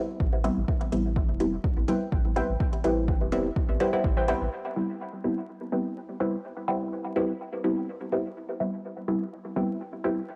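A muted, up-front chord stab with a filter sweep opens this deep, nocturnal dub techno excerpt at 125 BPM in 4/4. It is joined at 0.2 s by a round sub bass and a punchy overdriven kick, with metallic hi-hats following at 0.4 s. A warbling, nasal lo-fi pluck enters at 1.9 s, and both it and the sidechain-pumped, dub-echoed stab carry on alone past 4.5 s as the Am7 harmony shifts to Cmaj7/G under cassette tape character, vinyl crackle and light digital ambience.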